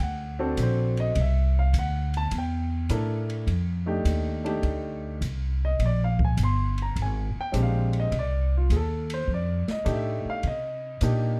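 A grand piano and a plucked upright bass open this relaxed jazz trio clip together at 0.0 seconds, with an open acoustic drum kit joining at 0.6 seconds. The tune swings in 4/4 at 103 BPM in F mixolydian, and the grand piano carries the melody as a solo throughout, its polished, present tone set up front and touched by plate reverb. The woody pizzicato bass, strung with steel and sitting prominently in the mix, anchors the low end. Heard in a small, airy room, the drums lay down hi-hat, ride, snare and a boomy kick, with dark-toned cymbals and a medium-tuned snare sitting further back. After an opening phrase moving from D7 to C13, a second passage begins at 3.5 seconds and cycles through F13, Bb13 and back to F13 before landing on Cm7, all within a dark, warm production.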